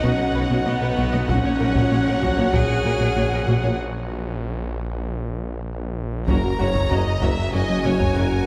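A close, smooth solo cello with digital delay sings the melody over lush, vibrato-rich violin and viola sections, dark distant French horns, a calm organ-like drone with ensemble chorus and built-in reverb, tight sequenced synth arpeggios, a round analog bass riff, a thick, menacing detuned saw bass, quiet bowed cello and double bass sections and hard-stick taiko in this vast, brooding hybrid orchestral and electronic film cue, where the cello drops out at 3.8 s for a break capped by a drum fill before a very quiet, roomy tuba joins at 6.3 s on the scoring stage's moderate reverb.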